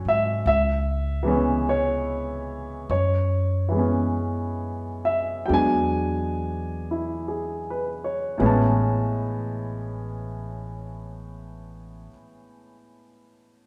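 A slow, swung 4/4 at 39 to 50 BPM eases back over the first 8.4 seconds, setting a tender, intimate mood for this jazz ballad in A major, cut from a longer piece. A smooth, vintage-toned grand piano sits up front with accompaniment through C#m7, F#7sus4 and E7 before settling on Amaj7 at 8.4 seconds, while a woody, growly pizzicato upright bass plays underneath until 12.1 seconds. The piano then carries on alone to 13.7 seconds, and both ring in the reverberant bloom of a recital hall.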